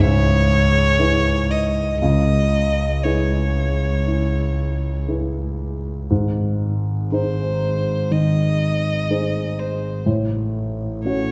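Neoclassical piano and strings in C# minor, this brief excerpt moves at a slow, rubato 59 BPM with a longing, melancholic mood, its harmony passing from C#m7 to G# at 6.1 seconds and on to A6. A clear, up-front solo violin carries the melody with smooth vibrato in a narrow range, over a dark, woody upright piano accompaniment with a mellow, vintage character and a focused, bowed double bass holding the low line. The whole piece is cast in a wet concert hall reverb that lends the church-like space a lingering glow.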